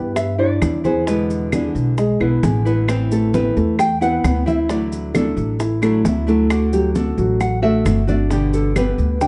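A thumpy, woody upright bass sits up front in this danceable Cuban son and guajira groove at 133 BPM, beneath a thumb-plucked nylon-string guitar melody with fresh strings, a small fingerpicked nylon-string guitar accompaniment with audible finger squeak, and boxy, mellow grand piano arpeggios, while low-tuned congas with a thick skin, tight high-tuned bongos and dry claves enter in the background at 0.2 seconds alongside grainy maracas, all in a dark, lightly reverberant production.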